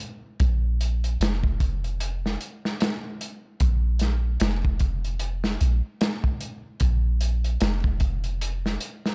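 This short trip hop excerpt has a dry, dusky production with very little reverb, and both parts sit close to the listener. The mood is melancholic and hypnotic, carried by a swung sixteenth-note feel in 4/4. A crunchy breakbeat kit enters at 0.4 s with hi-hat, a tight kick and a medium-tuned snare, its acoustic studio-room tone saturated and gritty, mid-forward, with a rolled-off top. Alongside it, a soft 808-style bass plays a deep, round sine tone between F1 and Bb1, with a fast attack and a decaying tail. The bass stops at 8.8 s, and the drums carry on alone until the close at 9.1 s.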